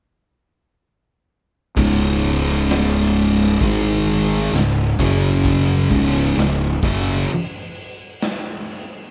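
Played live in one room with a moderate large-studio reverb, this ominous, hypnotic stoner and doom metal fragment moves at a slow 65 BPM. A double-tracked, up-front fuzz guitar grinds through a riff on C#5, G#5 and F#5 power chords, with a growly, overdriven fingered bass beneath it, both sounding from 1.8 to 7.3 seconds. Behind them, a gritty, saturated garage kit of hi-hat, punchy kick and medium-tuned snare pumps in a bright stone room with a rolled-off top, carrying on alone until 8.9 seconds.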